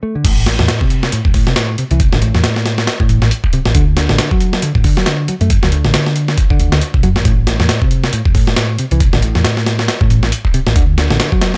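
A dry mix opens this funky, energetic breakbeat cut, where a compressed, pitched-up, up-front sampler-style drum kit with a thumpy kick, medium-tuned snare, hi-hat and crash cymbal carries studio reverb and tape-warm grit, a bright, growly picked electric bass riff runs through tube saturation, 12-bit sampler crunch and a low-pass filter from 0.0 seconds, and a dark, round hollow-body fingered bass sits beneath over a swung Am to D vamp.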